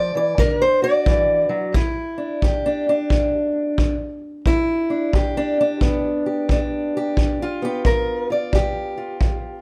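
A light reverb gives this short cut from a longer piece a close, lived-in sound. It is soulful, gritty acoustic country blues in G mixolydian at 88 BPM in 4/4, with a loose swing on the eighth notes and tuning set slightly sharp, at A4 = 441 Hz. A fingerpicked steel-string acoustic guitar carries the melody from G2 up to D5, its boxy parlour tone placed up front, and it opens alone before a kick drum joins at 0.4 seconds. The kick is punchy and roomy, played with brushes in a studio room. The harmony sits on D from 0.4 seconds and then moves to G7 at 1.7 seconds, where a new section begins and runs to the end of the cut.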